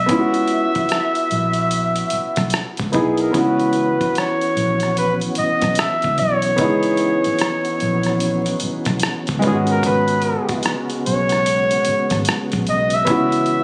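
Smooth and sultry, this short R&B and neo-soul excerpt moves at an unhurried 74 BPM in 4/4, with a swung sixteenth-note feel and a C# dorian colour. A flugelhorn carries the melody up front, its tone warm and punchy with a gentle vibrato, while an intimate upright piano supplies woody accompaniment where the action noise of the keys is audible. Beneath them, a vintage foam-muted electric bass sits dark and punchy, and a dusty sampler-style kit adds gritty hi-hat, rim click and a thumpy kick from 0.1 seconds. At 3.3 seconds a mellow tonewheel organ joins with sustained chords, turning through a slow rotary speaker and chorus vibrato with a faint key click. The harmony rests on C#m11 before shifting to G#m11 at 9.4 seconds and returning, all set in light reverb with vinyl crackle and the slightly roomy character of a phone recording.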